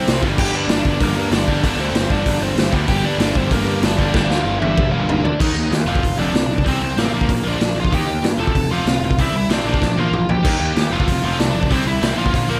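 This upbeat, energetic punk rock clip opens at once on a dark, bluesy lead guitar melody over a stack of picked rhythm riffs: a biting overdriven guitar sitting in the background, a very quiet tight distorted guitar, and a bright, double-tracked high-gain guitar that drops out at 5.2 seconds and returns at 10.4. A growly fuzz bass drives underneath, while a raw garage drum kit sits up front with a boomy kick, a gritty, saturated sound and a rolled-off top, pushing through fills that first arrive at 4.1 seconds. After a G minor opening, the harmony cycles through Eb, F, C and Bb, all in a dry, close mix.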